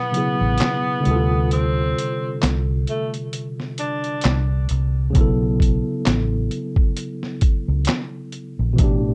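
A breathy tenor saxophone and a worn, slightly out-of-tune tine electric piano open this melancholic, nostalgic lo-fi hip hop fragment, cut from a longer piece. The saxophone plays a short, intimate jazz-style solo melody in a soft, whispered subtone with vibrato and scooped notes, set distant and roomy through a low-pass filter, analog delay and plate reverb, before falling away at 4.5 s. Beneath it, the lightly overdriven electric piano, muffled by a low-pass filter as if through built-in speakers, carries the accompaniment across F#m11 and Dm7 chords. A compressed, pitched-down sampler-style kit of thumpy kick, medium-tuned snare, hi-hat and handclaps sits up front with a light sixteenth-note swing, joined at 0.4 s by a round, punchy, foam-muted fingered electric bass. The break gives way at 5.2 s to a B9sus4 chord, and the whole piece sits in a dark, warm production with a small, moderate room reverb.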